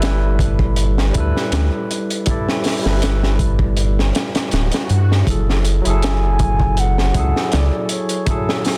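A crunchy breakbeat kit, a round analog bass and a barky tine electric piano open this smoky, cinematic trip hop excerpt together at 80 BPM in 4/4, with a light swing on the sixteenths. The drums sit up front, acoustic yet gritty and saturated, with a tight kick, a high-tuned snare and hi-hat under a rolled-off, dark top. Alongside them the deep analog bass, also up front and thickened by tube saturation, holds sustained notes with a fast attack and an evolving tone until it stops at 7.7 seconds. The electric piano comes through a combo amp, bright and lightly overdriven, colored by harmonic tremolo and tape echo as the chords move from G69 to F#m9, while a very quiet electronic swell sounds behind the groove from 4.3 to 5.3 seconds. At 6.0 seconds a mellow wooden baroque flute enters with the melody, pure-toned with vibrato and a crisp attack, its tape echo trailing each phrase in a dry, dense and heavily limited modern mix.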